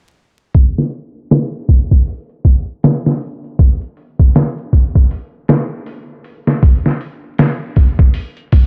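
A sampler-style trip hop drum kit sits up front, pitched down and compressed, with a thumpy kick, a medium-tuned snare and hi-hat, playing from 0.5 to 8.7 seconds at 79 BPM in 4/4 with a lazy swing on the sixteenths. The dry, gritty hardware sound carries vinyl crackle and a low-pass filter, and the kit was re-recorded in a small room. A filter sweep runs across this short cut from a longer piece, giving it a cinematic, hypnotic mood.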